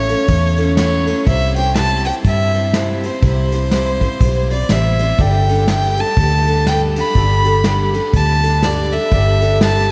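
Honky-tonk and classic country with a sunny, down-home feel at 122 BPM in swung 4/4, where a clear, focused fiddle carries the melody up front over bright picked steel-string acoustic guitar dressed in lush chorus, a dark, round, foam-muted fingered electric bass, and soft brushed drums with a tight kick and rolled-off top, before a very quiet, polished grand piano slips in at 5.2 seconds, all of it soaked in a huge, dreamy ambient reverb across this short excerpt.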